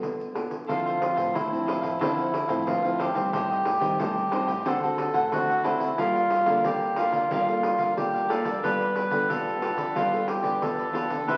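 Yearning yet lively, this samba and choro fragment opens with a fingerpicked nylon-string guitar accompaniment sitting in the background, finger squeak and all, and a jingly, vintage-toned pandeiro under soft hands, before a reedy, breathy, nasal melodica steps up front as the second line at 0.7 s alongside a crisp picked cavaquinho and a dark, thumb-plucked classical nylon-string guitar bass, the music bathed in a wet large-studio reverb and the crackle of a very old 78 rpm record.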